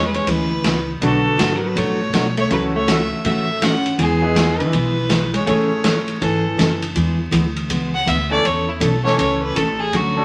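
A swung 4/4 pulse at 162 BPM drives this cheerful western swing excerpt in A major, with a distant, roomy big-band drum kit laying down hi-hat, ride, snare and a boomy kick under a rolled-off top. A thumpy pizzicato upright bass on gut strings anchors the low end, while a full-bodied picked dreadnought acoustic guitar and a brilliant upright piano, with its action noise audible, fill in the chords from E6 through Bm7, A6/C# and Amaj7. Up front, a clear, earthy bowed fiddle carries the melody with light vibrato. A dark, compressed hollow-body electric jazz guitar adds a clean, picked second line until 6.8 s. At 7.0 s the fiddle takes a solo over E and A chords, and the whole recording sits in wet studio reverb with a layer of vinyl crackle.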